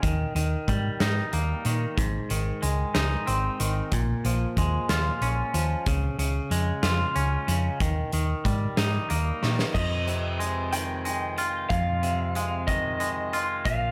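A twangy, bright electric guitar arpeggio opens this euphoric, hopeful post-rock excerpt in a slow 6/8 at 62 BPM, its warbly pitch drift and slapback echo riding over a dark, round hollow-body bass and a punchy, up-front rock kit with bright cymbals in a pumping room, moving through Eb, Ab, Bbm7 and Db until a drum fill at 9.4 seconds ushers in a slightly broken-up slide guitar melody, played with fingerpicks, that rings out high over an Fm7 chord under light reverb.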